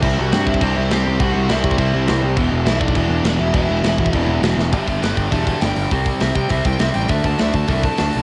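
Punk rock at 204 BPM in straight 4/4, this short, raw and urgent excerpt, cut from a longer piece, has the character of a home recording on cassette, set in a studio reverb. A fuzzy, growly picked electric bass sits up front, while a tight metal drum kit with a medium-tuned snare, tight kick and rolled-off top supplies crash, splash, hi-hat, kick and snare. Two bright, picked rhythm guitars carry the riff in the lower register, one a cranked stack with overdrive and the other a crunchy part tucked in the background. Above them, a smooth, dark overdriven lead guitar plays the melody through analog delay. A drum fill at 4.6 seconds ushers in a lead guitar solo from 4.7 seconds to the end as the chords move from G through C5 and D5.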